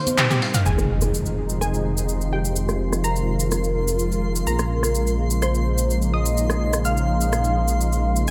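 Lightly reverberant, this emotional, bittersweet progressive house excerpt at 126 BPM in F minor opens on a short break where a layered big-room drum kit fill, a very quiet acoustic indie kit's ride and snare and a round analog pluck arpeggio with chorus and dub echo mark a band accent at 0.2 seconds. A deep, rumbling detuned saw bass and a background impact then arrive at 0.7 seconds as a filter sweep works over the drums, while a velvety chorused synth lead with vibrato and dub echo carries the melody over a mellow, evolving supersaw swell of sustained chords moving from Cm7 through Fm7 to Bbm7. These are joined by a crystalline wavetable pluck line up high, a grainy cabasa and a twinkling granular shimmer that enters at 1.3 seconds.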